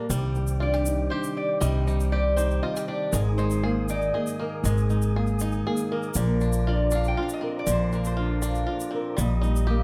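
A dark, boxy fingerpicked acoustic guitar, a soft flute-like tonewheel organ with fast rotary speaker in the background, and a twangy banjo playing arpeggios open this intimate, melancholic acoustic folk piece in 3/4, with a thumpy, woody upright bass up front and a grainy, close tube shaker joining almost at once. From 0.6 seconds a bright, nasal lap resonator guitar, played with a steel bar, takes a metallic slide solo over the Cmadd9, Absus2 and Bbadd9 chords. Light reverb and close, detailed microphones keep the small band sounding near and clear.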